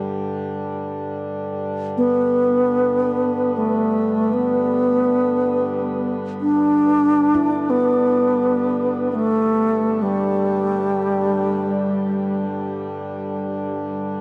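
Calm and spacious, this free-time world meditation piece in G major pentatonic, cut from a longer work, opens on a breathing, reedy pedal harmonium drone that sustains low in the range through all 14.2 seconds. At 2.0 seconds a pure, bright bass flute steps up front with vibrato and tongued notes, its melody bathed in shimmer reverb and diffuse ambient delay until 12.5 seconds, while from 7.3 seconds a very quiet, close-miked handpan adds ringing nitrided-steel tones from sharp finger strokes. The dark production sits in a huge, wet ambient reverb with a long tail.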